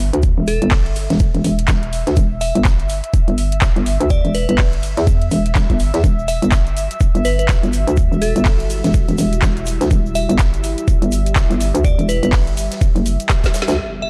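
A swung 124 BPM bass house groove in E minor sits on an up-front knocking electronic kick, with a garage kit of woody snare, handclaps, metallic hats and shaker layered over a background rock kit in a bright stone room, while a hollow, bouncy FM bass with tube saturation pumps against the sidechain in a swaggering, gritty mood. An airy, breathy pad holds an Emadd9 colour from the start, joined at 0.5 seconds by a crystalline synth bell carrying chorus, phaser and delay, and a deep, moody sawtooth pad with built-in reverb joins at 6.8 seconds. A drum fill and band accent close the excerpt, capped by an electronic impact at 13.8 seconds in a dark digital ambience.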